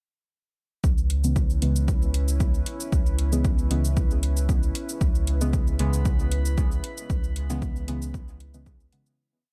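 A punchy, overdriven electronic kick sits up front in a four-on-the-floor pulse, anchoring this hazy, nocturnal dub techno piece at 115 BPM in 4/4 with a light 16th-note swing. Beneath it a round sine sub bass holds long gliding notes on C#, while metallic, overdriven cabasa and closed hi-hats carry the programmed backbeat in a small room ambience. Sparse, dark chord stabs move one shape in parallel through a filter sweep, coloured by chorus, phaser and dub echo. A warbling, detuned tape-like pad sustains a C#m7 chord from 0.8 seconds, its lo-fi 12-bit grit and built-in reverb pumping under the sidechain along with the bass and stabs. A glassy, drifting high note enters at 5.4 seconds as a calm overtone texture, and the whole piece fades out from 6.4 seconds.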